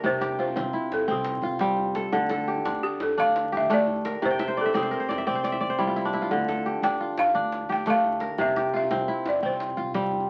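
This is a West African traditional piece for strings and xylophone, cut from a longer work. It has a warm, flowing mood at 115 BPM in a straight 12/8. Up front, a bright, ringing kora plays crisp fingerpicked arpeggios across a broad span. A dry, woody balafon struck with rubber mallets carries the melody with a buzzing, band-limited vintage tone. In the background, a thumpy, woody pizzicato upright bass with dark gut strings and a hard-handed, medium-tuned djembe support the groove. The harmony moves between C and Dm, and the kora adds a fill at 4.3 seconds, joined by a drum fill at 5.6 seconds. A moderate studio ambience and the crackle of a very old 78 rpm record give the sound an aged character.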